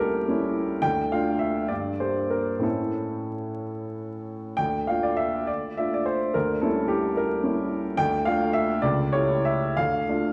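A woody, polished upright piano sits up front and plays alone through this 10.3-second fragment of a romantic character piece, its long sustain blooming into the wet reverb of a church or concert hall beneath a layer of vinyl crackle. In D minor and a rubato 6/8 at roughly 60-77 BPM in dotted quarters, the stormy, passionate mood unfolds through shadowy diminished harmony over a D bass, moving to G minor and A before settling back toward D minor. The instrument is tuned slightly sharp of standard pitch, at A4 = 441 Hz.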